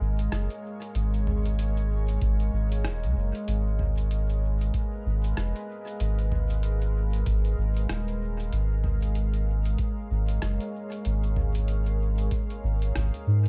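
Ambient dub at 95 BPM in 4/4, with a gentle swing on the sixteenths, this short excerpt from a longer piece feels meditative and deep. A dark, detuned sawtooth pad holds sustained chords throughout, its slow attack and long release softened by chorus and its own reverb, with wave-folding and ring modulation lending it a moody edge. Underneath, a round, mellow sub bass sits up front with tube saturation, carrying the low end from the very start. A muffled, pitched-down sampler-style kit of hi-hat, rim click and toms enters at 0.2 seconds, compressed and tape-softened, with dub echo trailing its hits. An analog electronic kick joins at 2.2 seconds and drops out at 12.5 seconds, while the harmony moves from a rootless F#maj9 to G#m69 and back. The production is dark and close, with little reverb overall beyond the pad's own.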